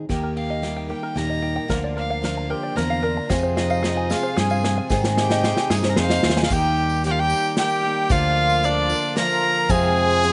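Nostalgic and uplifting, this short indie folk passage in Eb major sways in 3/4 at 113 BPM, its arrangement building through the first 6.5 seconds before settling into a new section. A close, reedy fiddle with a gut-string tone carries the melody from 0.4 seconds, while a trumpet with light vibrato and a smooth top adds a classical-style second line from 2.5 seconds, touched with slapback echo. Underneath, a shimmering, octave-doubled twelve-string acoustic guitar is picked with audible finger squeak, an open-back banjo plunks out twangy, percussive arpeggios until 6.5 seconds, and a fingerpicked plugged-in dreadnought guitar appears only briefly at the very start. A round, amped electric bass sits up front alongside an airy, polished acoustic drum kit played with bundle sticks, its tight kick and dark cymbals joined by a drum fill during the build-up. From 3.3 seconds a classical-style brass ensemble holds sustained chords in the background, and a jingly tambourine rings from a distant, large room. 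The chords move from Eb through Bb/D and Fm to Ab, and the sound is dry and open-air, with the top end rolled off above 10.8 kHz.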